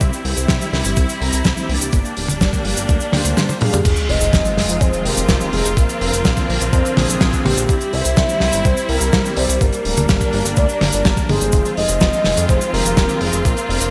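A straight pulse from an overdriven, thumpy electronic kick and a dry, damped 70s drum kit with a fat, up-front snare drives this nostalgic, melodramatic italo disco excerpt, where glossy chorused synth bass, lush bowed strings with vibrato and dark phased synth brass stabs in the background carry the chords until the kick drops out for a drum fill at 3.4 seconds, a soft octave-layered synth lead with tremolo and digital delay takes the melody from 3.6 seconds, and a sub drop lands at 3.9 seconds, all set in a bright 1980s-style digital production with a lush hall reverb.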